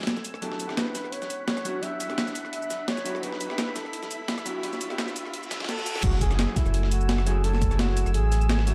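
A gently swung breakbeat kit sits up front in this soulful, melancholic liquid drum and bass passage, its gritty, high-tuned snare, crash cymbal, rim click, shaker and hi-hat bathed in studio reverb, while a dusty soul kit of tape-softened hi-hat and medium-tuned snare ticks along in the background through high-pass filtering. A round, sine-based sub bass holds the low end prominently, and a vintage hollow-body jazz guitar adds dark, clean, picked accompaniment through tape echo. A lush, detuned unison pad warbles with chorus over long sustained chords, moving from Em9 to F#m9. From 0.4 seconds a breathy, intimate flugelhorn carries the solo melody with vibrato and scooped notes, also touched by tape echo. The opening builds under a filter sweep and a very quiet electronic riser and reverse cymbal, then at 6.0 seconds the drop arrives with a thumpy, compressed electronic kick set in the background of this shadowy, lightly reverberant production.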